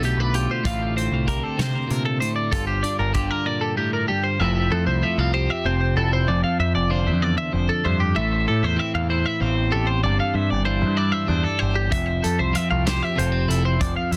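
Two clean, compressed twelve-string electric guitars open this wistful, intricate math rock and midwest emo excerpt in 6/8, one playing warm plate-reverbed chords while the other spins bright, twangy arpeggios up high through digital delay, above a growling, overdriven picked bass and a loose small-room indie drum kit with a tight kick that drops out at 3.3 seconds and returns at 11.9, the whole piece sitting in a dense, heavily limited master with light reverb.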